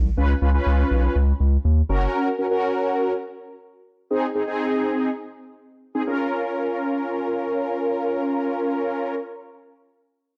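A straight 4/4 pulse at 122 BPM carries this melancholic, nocturnal pop excerpt in Bb minor, where a round, deep analog bass sounds only from 0.0 to 2.1 s, joined at 0.2 s by a mellow, brassy synth brass part, detuned sawtooth with a filter sweep, chorus and phaser, that sustains dark accompaniment chords until 9.1 s, moving from Db7 through Gb and Ab to Bbm at 6.1 s, all set in a moderate plate reverb and a dense, heavily limited modern master.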